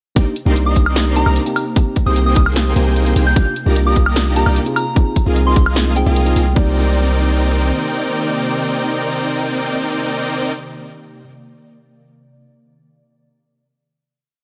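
Emotional and dreamy, this future bass piece in C minor moves at 150 BPM in a half-time feel, with a hard-clipped electronic kick, a punchy big-room kit with hat rolls and a high woodblock, and a deep sine 808-style bass driving a drop of huge, detuned supersaw stabs that throb with sidechain pumping and digital delay, while a mellow tine electric piano plays dotted-rhythm chords, a soft FM synth bell adds short answering phrases through chorus and phaser, and a very quiet, airy pad sustains Cm9, Abmaj9/C, Ebmaj9/C and Bb7sus4/C before everything settles onto a final Cm9 chord at 6.6 seconds.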